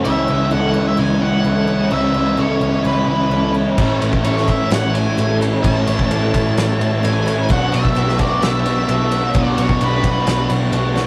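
This excerpt opens with a dense wall of guitars at once: a biting, up-front overdriven guitar and an overdriven semi-hollow guitar grind out low riffs together, while an octave-fuzz lead guitar sings a fuzzy melody above them. Tucked into the background, a picked twelve-string acoustic guitar spins shimmering, octave-doubled arpeggios with audible finger squeak. A vintage electric bass, dark, foam-muted and round, enters at 0.1 seconds, and a loose indie drum kit with a punchy kick, medium-tuned snare, dark cymbals and a pumping room sound joins at 3.8 seconds. The track is blissful, dreamy shoegaze and dream pop in A major at 129 BPM in a straight 4/4. The harmony drifts from C#m7 to Amaj7 to Bm7. A rough rehearsal-room recording with tube saturation and a wet small-room ambience gives the whole a hazy, live-in-the-room glow.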